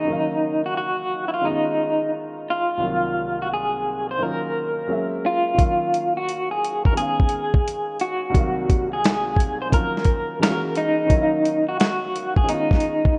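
A slightly broken-up electric guitar through a small old amp carries the melody up front, with tremolo and tape echo, over a woody, slightly detuned upright piano in this reflective, melancholic lo-fi hip hop clip in Eb minor at 87 BPM with a swung 16th feel, and a gritty sampler-style drum kit with a thumpy kick joins them at 5.6 seconds, all set in a lush hall reverb within a rough home demo mix.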